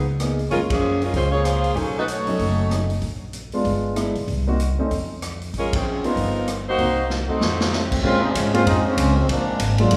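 A clear, close-miked saxophone section with light vibrato opens this sultry big band swing in Bb minor at 191 BPM, over a woody, growly pizzicato upright bass, joined almost at once by a concert grand piano and a natural drum kit with ride, hi-hat, snare, rim click, punchy kick and crash. Band accents land at 0.7 and 5.7 seconds, and after a drum fill a bright, present trombone section takes a solo from 8.0 seconds. A wet scoring-stage reverb gives the band a hall-like ambience.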